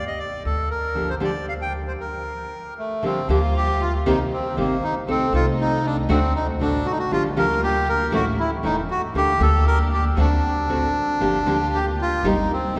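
A reedy, bright bandoneon carries the melody up front in this dramatic, melancholic G minor tango at 118 BPM with a rubato feel, over woody pizzicato upright bass and a fingerpicked classical nylon-string guitar entering at 0.9 seconds, with a break from 2.0 to 3.0 seconds before a dark, sul tasto chamber string section adds soft-attack bowed stabs in the background from 3.0 seconds, all bathed in a cathedral-like reverb in this excerpt cut from a longer piece.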